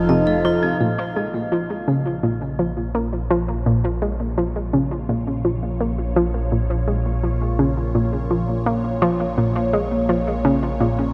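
A steady, straight 4/4 pulse at 84 BPM drives this hypnotic, expansive piece of sequencer-driven space music in B-flat minor, cut from a longer work and moving from an F7 chord into B-flat minor at 0.8 seconds. Up front, a bright, nasal analog pluck with chorus and tape echo repeats a riff from 0.1 seconds onward, while a fat, detuned analog bass holds a low F beneath it with an evolving filter sweep. A swirling phased analog pad sustains chords through the whole passage, colored by phaser and chorus and fading in from 0.8 seconds. At the very start, a vibraphone struck with medium hard mallets rings out metallic arpeggios through tape echo, and a very quiet, bubbling stepped-filter texture flickers high above before both drop away. Everything sits in a vast, echoing space, with a long cathedral reverb that lets the sounds hang and blur together.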